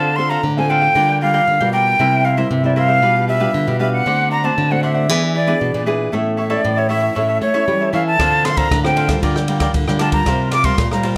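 Samba and choro in D minor at 116 BPM, festive and sunny, with an airy jazz flute singing an expressive, vibrato-rich melody up front with a slapback echo over crisp picked cavaquinho, a fingerpicked nylon-string guitar accompaniment and a classical nylon-string guitar bass line, moving through chords such as Dm7, C7, E7 and A under light reverb, until an open jazz drum kit with a punchy kick, dark cymbals and rim clicks joins at 8.2 seconds in this short cut from a longer piece.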